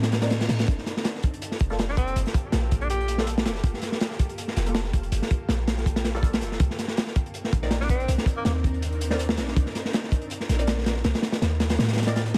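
A clear tenor saxophone cuts through this dark, atmospheric drum and bass excerpt in two brief forceful phrases, around 1.9 and again near 7.8 seconds, its scooped notes, vibrato and jazz phrasing roughened by vintage 12-bit sampler grit and trailed by dub echo. Underneath, a crunchy breakbeat kit sits up front at 162 BPM in G minor, its saturated, gritty tone and rolled-off top giving the tight kick and medium-tuned snare a mid-forward punch, while a second, very quiet layer of the same kit adds a dark, smooth hi-hat and high-tuned snare, and the whole groove carries a light 16th-note swing. A deep, boomy 808-style bass with a sine body, noise layer and tube saturation anchors the low end throughout. In the background, a blurred, evolving granular cloud pad holds sustained chords moving between Cm9 and Gm9, and a muted filtered dub chord stab with a moving notch, phaser, lush chorus and dub echo drifts alongside it. 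A very quiet electronic reverse cymbal flickers in at 0.2 seconds, and a small room reverb ties the jungle-flavoured groove together.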